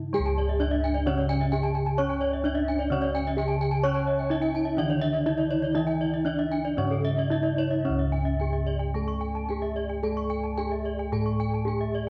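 A straight 4/4 pulse at roughly 110-130 BPM drives this ceremonial, brilliant fragment of Balinese gamelan in C# pelog, which moves into a new section at 7.8 s. A bronze metallophone carries the melody with a wooden mallet and paired tuning that sets up shimmering beats. Beneath it, a bright, dry, close-miked metallophone struck with a horn mallet plays the accompaniment, and mellow, round bossed gongs with padded beaters hold the bass up front. Two higher horn-mallet metallophones spin arpeggios, one with a boxy small-room tone and the other sitting slightly flat with a shimmering, beating edge. The whole ensemble rings through a wet recital-hall reverb and the warbling pitch drift of worn cassette tape.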